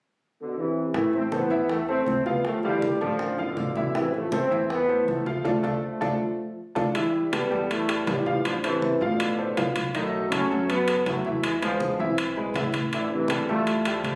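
Salsa that feels driving and danceable, cut from a longer piece, with a mellow, punchy trombone section carrying the melody up front from 0.4 seconds, a clear, worn baby grand piano with audible action noise accompanying up front, a woody, thumpy pizzicato upright bass, low-tuned congas and tight, high-tuned bongos in the background until the bongos give way to ringing, dry timbales at 6.9 seconds, a band accent just before the second section, and light reverb over a phone-in-the-room sound.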